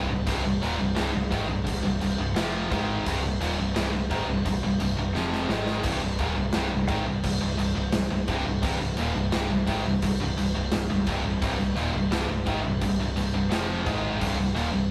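Three electric guitars and an overdriven bass open this heavy metal excerpt together on a riff in C minor, with a big rock drum kit joining at 0.3 seconds. The tempo sits at a steady 86 BPM in a straight 4/4, and the mood is aggressive and relentless, staying on a C minor chord throughout. Up front, a tight, bright, picked distorted guitar drives the riff, while a scooped high-gain guitar sits further back and a double-tracked heavy high-gain guitar lies very quiet underneath, all three covering C2 to Ab3. The growling picked bass, warm and direct-and-amped with overdrive, anchors the low end from C1 to Ab1. The acoustic drums are also up front, with a punchy kick, medium-tuned snare and bright crash cymbals in a big room sound, and a drum fill breaks in at 5.1 seconds. Light reverb colours a rough rehearsal-room recording marked by lossy compression artefacts.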